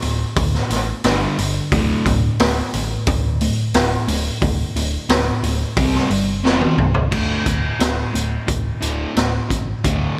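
Bright, 1980s-style digital production with light small-room reverb frames this aggressive, heavy hard rock excerpt, where a crunchy, double-tracked overdriven guitar riff and a round, amped picked electric bass play alongside an up-front raw garage drum kit with a high-tuned snare, punchy kick, gritty saturation and gated reverb, and a drum fill at 6.5 seconds leads into a new section at 7.1 seconds.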